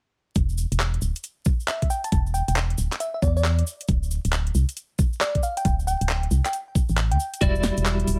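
Soulful and bouncy, this two-step UK garage excerpt swings its 16ths at 136 BPM, with a knocking electronic kick, a garage kit of cracking snare, handclaps and metallic hi-hats, and a hollow, dark, organ-like FM bass all sitting up front from 0.4 seconds, while a grainy, saturated cabasa sits quietly beneath them. At 1.7 seconds a bell-like, sparkling FM electric piano enters with a mellow melody treated with chorus and delay, moving from an open start to a D5 chord. At 7.4 seconds, on an Em9 chord, a clean, picked electric guitar adds compressed stabs with tremolo and delay, all over light reverb and a bed of vinyl crackle.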